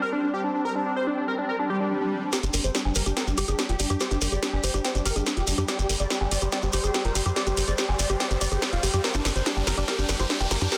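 A straight four-four pulse drives this alien psychedelic trance clip, where a thick, detuned unison lead with phaser and dub echo and a bubbling, resonant stepped-filter texture open together before a swell and riser creeps in at 1.6 seconds; at 2.3 seconds a build-up begins with an up-front techno kit of bongos, metallic hats and a cracking snare playing a fill, a grainy shekere in the background, a woody wave-folded pluck riff with tape echo and a filter sweep on the lead, joined at 2.4 seconds by a tight, punchy sawtooth sequencer bass, all set in a lush hall reverb under a dense, heavily limited master.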